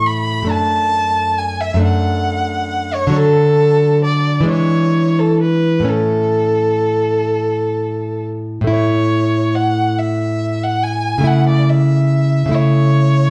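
A single bowed violin carries the melody in this serene romantic duo, its smooth, rich tone shaded with vibrato and placed up front as it sings between A4 and B5. Beneath it, a fingerpicked nylon-string guitar supplies a full-bodied accompaniment with the warm resonance of fresh strings, reaching from F#2 to E4 and sitting slightly louder than the violin. The music moves in a slow, rubato 6/8 at roughly 42-48 dotted-quarter beats per minute in A major, tuned to A4 = 441 Hz, with harmony passing through D, E7 and A before settling on A/C#. A new section begins at 8.7 seconds, and both instruments play together throughout this 13.3-second passage cut from a longer piece. A reverberant recital hall and a dark, warm production give the recording a soft, enveloping glow.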